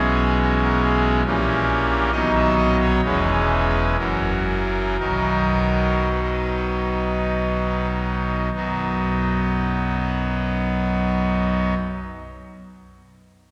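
Serene and majestic, this short classical excerpt is a chorale-style piece for solo pipe organ in B major and 3/4, moving with a rubato feel between 47 and 71 BPM and slowing down from 0.8 to 8.5 seconds. The organ, sounding on a brassy, bright trumpet stop with romantic voicing, sits up front and spans from E1 to E5 until it stops at 11.7 seconds, its chords moving from C#m7/B through A#dim7 and F#7 to rest on B. A wet church reverb with a 2.8-second decay surrounds it, giving the sense of a large church or concert hall.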